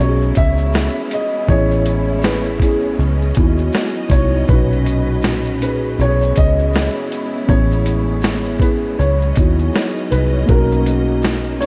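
A round, punchy foam-muted electric bass sits up front in this nostalgic, dreamy lo-fi hip hop fragment at 80 BPM in B major, alongside a gritty, pitched-down boom bap kit with a thumpy kick and high-tuned snare, warbling, chorused felt-like synth keys, a mellow felt-muted upright piano carrying the melody with audible action noise, lush chorus and analog delay, and rich bowed strings holding sustained chords low in the blend, the whole mix soaked in huge ambient reverb and vinyl crackle.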